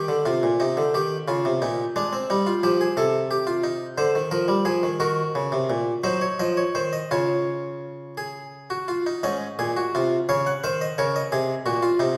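A bright, airy harpsichord sits up front in a recital hall with a wet reverb, its single set of plucked strings giving it an Italian-style clarity. This contemplative, solemn baroque-style three-part fugue moves at 58 BPM in a straight 6/8, settling into Db major from 5.0 s after passing through chords such as Eb7, F7/C and Ebm13. Cut from a longer piece, the solo harpsichord spans Ab2 to Gb5 and turns toward a new section at 9.2 s, closing on an Ab7 chord.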